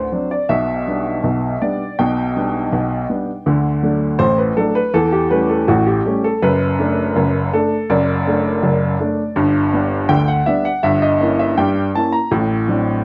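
A lone baby grand piano plays a playful, cheerful ragtime passage in G major at 81 BPM in a straight 2/4, its worn, present tone carrying a long sustain up front in a moderate club-sized reverb. The harmony moves from G/B through D and A7/E to a Gdim7 before settling on D7/A at 12.3 seconds. The whole 13-second excerpt, cut from a longer piece, sounds as though played back from an old cassette, with a warbling pitch drift.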